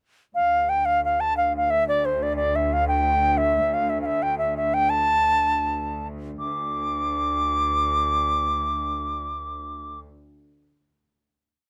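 A rough home demo with light reverb carries this wild, driving Celtic slip jig in D minor, moving at 119 dotted-quarter beats per minute in 9/8. Up front, a bright, reedy wooden flute with vibrato and a crisp attack plays a motif-based melody in period phrases from 0.3 seconds. Meanwhile a distant chamber string section holds a rich, bowed drone on D2 with light vibrato and gut-string tone. A single section runs until the final note rings from 6.4 seconds.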